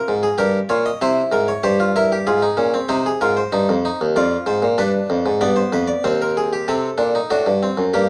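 Serious and driving, this brief cut from a longer baroque-style three-part fugue in 3/4 features a solo Italian-style harpsichord, its bright plucked tone on a single set of strings placed up front and spanning Eb2 to Eb5, heard through moderate studio reverb and the warbling pitch drift of worn cassette tape as its chords move from Gdim and C7 toward a closing D7 at 6.7 seconds.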